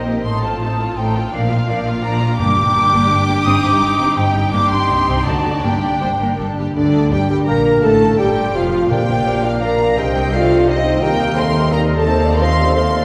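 Mellow French horns carry the weight of this fast, urgent romantic movement in G minor, holding sustained chords once they enter at 6.8 seconds alongside a soft-edged clarinet line and a bassoon with light vibrato. From the opening, the violin section sings the melody with lush, expressive vibrato, joined by a pure, crisp-attacked concert flute and a second, focused violin line with a smooth top. Violas with portamento supply accompaniment, while a ringing, fingerpicked harp spins arpeggios in the background over a rich cello section and woody double basses. In 3/4 at 169 BPM with a rubato feel, the harmony moves through Bb, G minor and C minor before turning on a tense D(b9) chord and later passing through F and Bb. Very quiet timpani touches mark 2.4 and 8.9 seconds, and the whole ensemble sits in a reverberant concert hall, heard as a dramatic fragment of a longer work.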